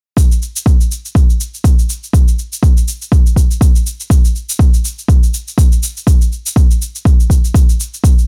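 Hypnotic and warm, this afro house excerpt at 122 BPM in 4/4 rides a 56% swing on the sixteenths. A deep, tape-warm electronic kick drum sits up front, with a softer electronic shaker beneath it, both re-recorded in a small room and running from about 0.2 seconds to just past 8 seconds. The sound is dry, with little reverb.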